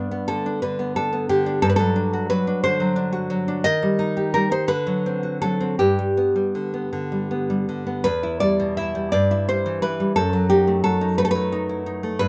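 A 6/8 pulse of roughly 52-61 BPM, stretched with rubato, carries this nostalgic, sunny romantic piece for solo classical guitar, where a warm, fingerpicked nylon-string guitar sits up front in moderate studio reverb, moving from G major through a colourful Eb chord before turning to E minor at 8.0 seconds in this short cut from a longer work.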